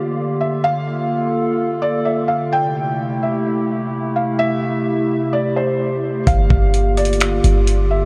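Ethereal and hazy, this half-time hip hop cloud-rap fragment floats on a warbling, nostalgic tape-like pad with chorus and sidechain pumping, joined at 0.4 s by a soft, felt-muted upright piano melody through a low-pass filter and tape echo, before a deep, boomy 808-style bass and a gritty sampler-style kit of finger snaps, hi-hat and thumpy kick arrive at 6.3 s, the whole mix soaked in a huge, dreamy reverb.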